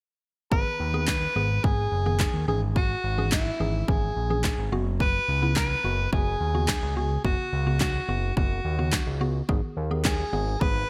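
A bright, 1980s-style digital production with light reverb and a digital ambience frames this short dance-pop fragment, cut from a longer piece and carrying a bittersweet yet confident mood over a straight four-beat groove. Up front, a breathy alto saxophone carries the melody in a close, whispered pop style, its edgy tone touched with light vibrato, a soft attack and a digital delay. Beneath it, a woody, round FM synth pluck with a mallet-like, percussive bite and short decay plays the accompaniment through a chorus effect and sidechain pumping. A fat analog bass blends sawtooth and square waves with a filter sweep and a moving notch, its thick, sustained low end also pumping to the sidechain. The punchy, layered electronic drum kit of kick, fat snare and handclaps sits up front with overdrive and gated reverb, while the harmony moves from G#m through C#m/G# to F#sus4 before settling back on G#m at 9.5 seconds.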